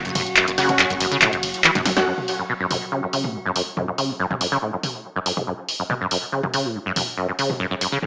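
Gritty and dry, this short cut from a longer driving peak-time techno track has the small-speaker sound of a hardware recording, set in a moderate digital room reverb. An industrial, driving mood opens on a drop, where aggressive, detuned sawtooth rave stabs with a sub octave sit in the background beside an eerie, metallic FM drone with a slow attack and long release, both treated with chorus and built-in reverb. Up front, a punchy analog drum machine with a tape-warm snare, handclaps, hi-hat, ride cymbal and toms runs through the whole clip, with a drum fill from 1.7 s. A squelchy, resonant sawtooth acid bass riff with ensemble chorus and analog delay also plays throughout, and a deep, saturated sine sub bass sits low in the background under the opening. From 2.1 s the stabs, drone and sub bass have dropped away, leaving drums and acid bass as a filter sweep works over the riff until the end at 8.1 s.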